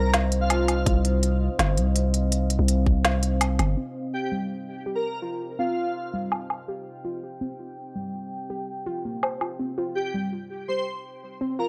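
A dry, gritty hardware sound with light reverb frames this heavy, spacious half-time drum and bass excerpt, cut from a longer piece and set in a half-time feel. A deep, moody ambient pad built on detuned sawtooth and sine layers with a sub octave holds sustained chords throughout, softened by chorus and its own reverb and pumping under a sidechain. Up front in the opening stretch, a growling, buzzy 808-style bass with tube saturation sits beside a tight, layered electronic kick and an overdriven organic electronic kit of woody snare, smooth hi-hats and woodblock, all re-recorded in a small room, before the bass drops out at 3.8 seconds and the kit returns only in brief touches. From that point a warbling, lo-fi pluck of detuned triangle and sawtooth carries arpeggios through chorus and analog delay, with a filter sweep running across its whole part. Weaving through it all in short phrases, an airy, dreamy lead with vibrato, a noise layer and cassette-tape coloring drifts in and out, ending at 11.7 seconds.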